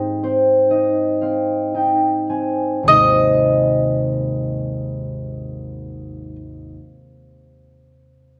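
Tender and gentle, this short lullaby cut from a longer piece drifts in Ab major at a loose, rubato 51-65 BPM in 4/4, tuned slightly high. A picked mandolin carries the melody up front, its doubled strings giving a round, warm tone within a narrow span from C5 to Eb5. Beside it, a thumb-plucked concert harp supplies the accompaniment, ringing across a broad range from Ab1 to Ab5 and adding a fill during the opening 2.9 seconds while the tempo slows. Both parts sit close and acoustic, with the mandolin a touch more prominent and the harp sounding until 6.8 seconds. A moderate recital-hall reverb and a dark, warm production wrap the two instruments in a soft, intimate glow suited to bedtime.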